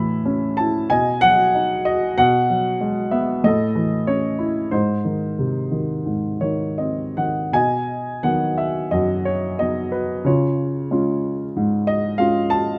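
Closely miked and detailed in a dry, intimate room, this short excerpt from a longer classical work features a dark, mellow grand piano sitting up front with a natural tone and short sustain. Playing solo in 4/4 with lyrical rubato drifting between 77 and 100 BPM, the piano moves through bittersweet, moody harmonies from A to B, then Eadd9/B, back to A and on to G#, ranging from F#2 to B5. A new passage opens at 7.5 seconds on B and turns to C# at 10.3 seconds before the recording cuts off at 12.8 seconds.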